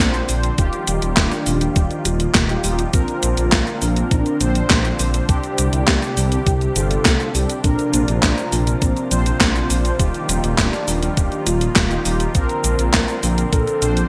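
Romantic and nostalgic, this synthwave passage in Bb major moves at 102 BPM in a straight 4/4, driven by a deep, rumbling detuned saw bass and a thumpy, tape-toned electronic kick, with an up-front 80s drum machine of handclaps, hi-hat, shaker and a gated-reverb snare, while mellow, brassy synth stabs with chorus and shimmer reverb ride over a smooth, warbling analog pad that pumps with sidechain, and a velvety, full-bodied synth lead carries the melody in the background through chorus, digital delay and shimmer reverb over Bbadd9, Ebadd9 and Csus2 chords, in a bright 1980s-style digital production.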